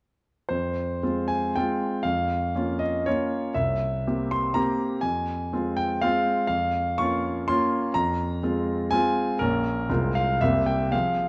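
Dotted rhythms in 3/4 drive this romantic classical dance, a short cut from a longer piece that moves with free rubato between 103 and 133 BPM. In F minor, the mood is capricious and nostalgic, with the harmony circling between Fm, Bbm over F and C7 before a closing turn through Bbm and Fm over C lands on C7 at 10.4 seconds. A solo grand piano carries everything from 0.5 to 11.3 seconds, ranging from Bb1 up to Db6. Its tone is clear, natural and intimate, placed up front with the noise of the action audible beneath the notes. A wet recital hall reverb, lasting about 1.9 seconds, surrounds the instrument within a dark, warm production.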